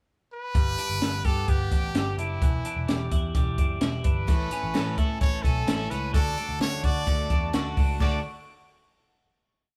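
A compact cocktail drum kit sets a brisk indie backbeat at 129 BPM in straight 4/4, with a high-tuned snare, punchy kick and a dark, rolled-off top sitting up front. Beneath it, a vintage foam-muted electric bass drives steady eighth notes with a round, amped tone. This breezy and youthful piece of jangly indie pop in D major opens with a brilliant trumpet pickup at 0.3 seconds. The full band arrives at 0.5 seconds for a verse moving through G, Em7, A and D. The close-miked trumpet carries a forceful, hook-based pop melody with light vibrato, while a clean, twangy twelve-string electric guitar plays a compressed fingerpicked roll pattern bathed in spring reverb. From 4.3 seconds a boxy, shimmering twelve-string acoustic guitar adds octave-doubled eighth-note strumming on open chord shapes, complete with finger squeak, before the band settles on a final chord in a lightly reverberant room.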